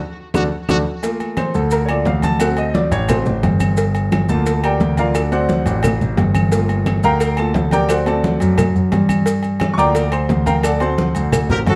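Danceable and driving, this salsa passage opens with a band accent and a drum fill, while a brilliant trumpet sounds a brief F#4 at 0.4 s, dressed in plate reverb and tape echo. From 1.0 s the bright, woody upright piano takes an open, up-front solo over a Bbmaj7 chord and then a recurring move between D7 and Gm7. Beneath it, a concert grand piano carries the bass with a deep, natural tone placed close to the listener. Part of the percussion sits further back: damped, low-tuned congas with a thick skin, tight high-tuned bongos and cowbell struck with hard hands, and claves heard in a small room. Grainy maracas and ringing metal-shell timbales with agogo bells sound close by comparison. A punchy, smooth-topped horn section bursts in at 11.5 s just as the passage is cut off, all within a dark, warm production and moderate studio reverb.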